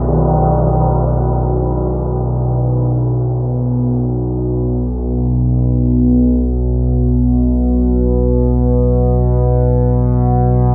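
Dark, warm production bathed in cathedral reverb with a 5.7-second decay frames this brief cut from a longer dark ambient drone piece in B minor, moving in free time. An analog drone sits up front for the full 10.7 seconds, spanning B1 to B2, its nasal sawtooth and pulse-wave tone evolving through pulse-width modulation and thickened with chorus. Each tone rises on a slow attack, sustains, and fades on a long release. Far beneath it, barely audible, a quartz singing bowl struck with a wooden striker rings pure, bright and airy, with a slow beating and a meditative character. A single B minor chord holds throughout, leaving an unsettling, desolate mood.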